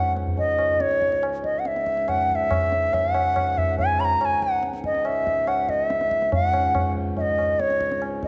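A bright, reedy bamboo bansuri carries a solemn, longing Hindustani melody in raga Bageshri, sitting up front with a pure, straight, tongued tone over a low, mellow, breathing harmonium drone that sounds boxy and small-roomed. At 0.2 seconds a low-tuned, ringing tabla joins, close and dry, in a straight four-beat pulse. The passage is cut from a longer piece and sits in a reverberant concert hall.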